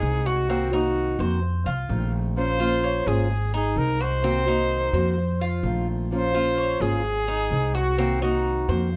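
A straight, danceable 4/4 pulse carries this nostalgic Latin excerpt, where an up-front, close-miked trumpet sings an intimate, whispered solo melody with mellow vibrato over thumpy pizzicato upright bass on woody gut strings, a boxy fingerpicked parlour steel-string guitar with audible finger squeak, and metallic double-stringed Cuban tres arpeggios, the mix sitting in light reverb and a dark, warm production as the Cm7b5, F7, Bbmadd9, Ab progression cycles.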